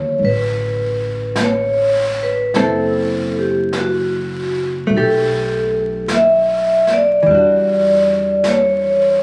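A jazz ballad excerpt in D major at a slow 51 BPM with a swung 4/4 feel, intimate and romantic, moving through D69, F#m7b5, G69/B and Em9. A ringing, metallic vibraphone struck with medium hard mallets carries the melody up front with slow motor vibrato, over a dark, clean, compressed hollow-body archtop guitar, a woody pizzicato upright bass, and a brushed drum kit that enters at 0.2 seconds with snare and hi-hat. The sound has the feel of a phone recording made in the room, with club reverb, light reverb and vinyl crackle around the band.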